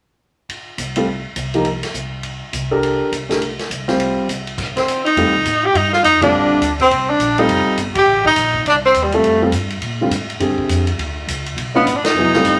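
A swinging drum kit opens this brief, sophisticated small-group jazz excerpt at a brisk 206 BPM, soon joined by a woody, thumpy pizzicato upright bass and an up-front grand piano comping through chords such as C7sus4 and F9. At 4.8 seconds two breathy tenor saxophones enter, a bright, scooped lead with vibrato over a softer, smooth-topped second line in the background, and band accents land at 6.2 and 12.0 seconds. A punchy kick and natural, medium-tuned snare sit in a moderate club reverb that lends the group a warm glow.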